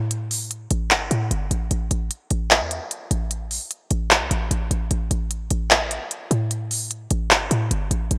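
A half-time 4/4 groove at 150 BPM drives this brooding, hard-hitting trap and hip hop fragment, cut from a longer piece, with an electronic trap drum kit of handclaps and crisp hi-hats entering at 0.1 s, placed up front. Alongside it, a short 808-style bass starting at 0.0 s ranges from G1 to A2, its punchy, tight sine tone carrying a noise layer, a fast attack and a decaying tail. A moderate plate reverb and a bright 1980s-style digital production give the 8.2-second passage its polished sheen.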